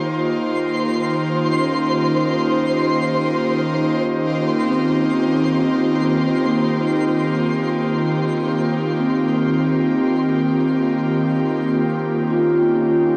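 An airy, breathy pad with a chorus sheen sits up front in this weightless ambient fragment, holding sustained chords that move from Eb7sus2 to Eb7 at 11.8 s. A twinkling granular texture sparkles high in the register until 11.8 s, while a mellow vibraphone played with soft mallets enters at 1.5 s in the background with delayed arpeggios. The recording is bathed in huge, wet reverb and the warble of worn cassette tape, its pitch drift lending a warm haze.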